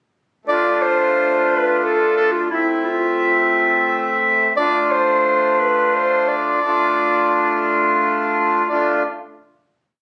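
This short klezmer piece in waltz time is bittersweet and festive, played by a duo of clarinet and accordion. The clarinet carries the melody in a warm, classical-style solo voice, placed up front and spinning a modal line dressed with ornaments. Beside it, the accordion supplies off-beat triad chords with a reedy, vintage tone, a slow beating in its sound and a band-limited character. The harmony moves from D minor to A minor and back to D minor, and both instruments play from 0.5 to 9.0 seconds before a final chord rings out to the close at 10.0 seconds. Captured on a phone in a small room, the sound carries a moderate club-like reverb and compression.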